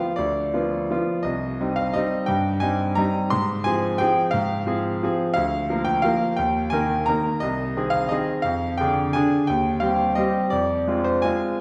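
A classical piano waltz in 3/4, this short passage taken from a longer piece carries a nostalgic, elegant mood at 174 BPM, its beats uneven and pulled about with rubato. A single bright grand piano plays solo throughout the 11.6 seconds, ranging from C2 up to C6 with a brilliant, natural tone that sits up front. The harmony moves through minor-key colours, opening on Bdim/D before settling on Cm, then passing through Fm/Ab, Bb/D, Eb, Ab/C, Ddim/F and Cm/Eb, and closing on Fm. The instrument is tuned slightly below modern pitch, with A4 at 435 Hz. A wet scoring stage reverb with a 1.6-second decay surrounds the piano, and the listener seems placed further back in the room.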